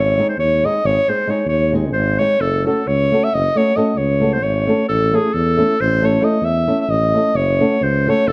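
This Balkan folk piece, in the manner of a Balkan wedding band, is cut from a longer performance and has a virtuosic, fiery mood in a straight 11/8 metre. A bright, classical-style clarinet carries the solo melody up front, with a mellow tuba playing the bass line as a solo part in the same classical style, at once up front yet distant and roomy. An acoustic flamenco guitar, dark and boxy, adds thumb-plucked accompaniment with audible finger squeaks, entering at 0.2 s and stopping at 8.2 s. The harmony moves from G# to F#m, and a new section begins at 4.9 s on A before settling back to F#m. The whole sits in a moderate recital-hall reverb with a warm production.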